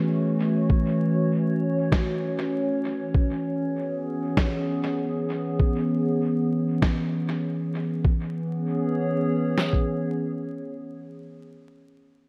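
Ambient dub with a deep, spacious mood, cut from a longer piece, where a warbling, nostalgic pad of dark square and triangle tones holds sustained F#m7 and C#m7 chords up front with chorus and its own reverb, while a muffled, pitched-down sampler-style kit thumps kick and snare from 0.7 s and a compressed electronic snare with dub echo joins from 1.9 s, all set in a dreamy mix soaked in hall reverb and vinyl crackle.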